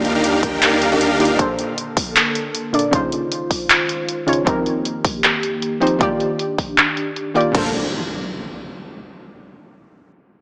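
Heard through a small-speaker sound, this bright, lush future bass excerpt sits in a moderate hall reverb with a digital sheen, moving at 156 BPM in Bb major with a half-time, lightly swung feel. A soft, round pluck carries the accompaniment up front, mellow and decaying, with chorus, sidechain pumping and dub echo. Beneath it, an airy, breathy pad holds slow-blooming chords that pump with the beat, while a filter sweep runs across a synth pad. A huge, thick, detuned supersaw riff and a deep, saturated sub bass sound only until 1.4 seconds and return briefly at 7.5 seconds. A layered, up-front big-room drum kit with claps, hi-hat and crash, its snare, hats and cymbals low-pass filtered, plays from the start and is joined by a punchy electronic kick at 0.4 seconds. The chords run from Ebmaj7 through Bbmaj7, Dbmaj9 and F9sus4, return to Ebmaj7, and then land on Bbmaj7, where an electronic impact marks the new section.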